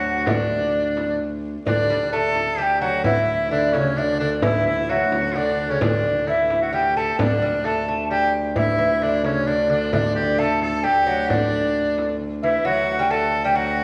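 In a straight 3/4 at 131 BPM that speeds up throughout, this rustic, ancient-feeling medieval dance in D major, cut from a longer piece, sets a mellow, hollow alto recorder melody with tongued chiff and vibrato over a bright, scooped-note folk shawm and a delicate fingerpicked lute on double strings as second lines, a rich, airy-bowed viola da gamba drone on a low D, and a frame drum that stops at 12.3 s, heard in the lingering reverb of a church or concert hall.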